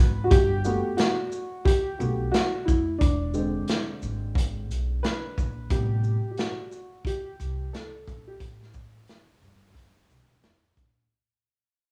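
A band playing live in one room fills a large studio with moderate reverb, giving this short jazz-hop cut, taken from a longer piece, a relaxed, smooth feel as it fades out across its length. At 89 BPM in 4/4 with a swung sixteenth-note lilt, a crunchy breakbeat kit sits up front with a tight kick, a medium-tuned snare, hi-hat and shaker, its sound dark and rolled-off at the top like a small room. A pizzicato upright bass on steel strings holds the low end with a woody, warm tone. A dark upright piano takes the lead, mellow and worn, slightly detuned and boxy, with short sustain and audible action noise that make it feel intimate and close. The harmony moves through Gmaj7, E7b13 and Am7 before the piano drops out at 8.4 seconds, leaving the bass and drums to carry a break over Asus2 until the bass stops at 11.1 seconds.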